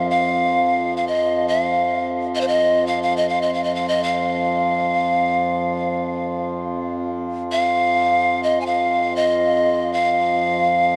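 Unmeasured and free in time, this 11-second excerpt of world meditation music drifts along with a spacious, meditative calm. A breathy, hollow pan flute carries the melody between C5 and Ab5, its bamboo tone straight and tongued with a chiff at the start of notes, and a tape echo trails behind each phrase. Beneath it, a hand-pumped harmonium holds a drone from F2 to F3, reedy and nasal with a dark, breathing quality. Both parts sit up front and sound for the full length, the flute a touch louder than the drone. A huge, wet ambient reverb with a long 7.8-second decay surrounds them, giving the piece a vast, open sense of space.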